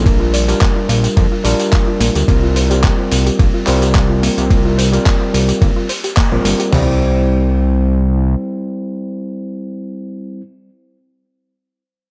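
A feel-good, groovy nu-disco cut in C mixolydian at 108 BPM with a light swing opens on an overdriven tine electric piano pushed through a combo amp, pumping with sidechain and trailing tape echo, over a fat, detuned sawtooth analog bass with filter sweeps, while round, chorused analog pluck arpeggios drift in the background through a diffuse ambient delay. A dusty, compressed sampler-style soul drum kit re-recorded in a small room drives the drop with a thumpy kick, medium-tuned snare, toms, crash, ride, hi-hat, handclaps and tambourine, all gritty with overdrive. The band hits an accent at 6.2 seconds as the harmony moves from Bb6 through C7sus4 to C, before the drums drop out at around 6.7 seconds, the bass stops at 8.4 seconds, and the electric piano carries on until 10.4 seconds.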